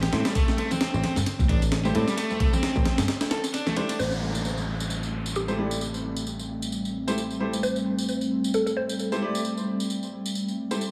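Raw and swaggering, this breakbeat excerpt opens on a gritty, pitched-up sampled drum kit up front with a thumpy kick, alongside an overdriven guitar riff with 12-bit crunch, growly picked bass, ringing high-tuned congas in the background, a tape-toned tambourine and clear grand piano stabs, then after a break at 3.1 s the drums, guitar and congas fall away as a woody FM mallet pluck with phaser and telephone filtering carries the melody over a warbling, detuned pad with sidechain pumping and an electronic downlifter from 4.0 s, all set in an echo-heavy mix.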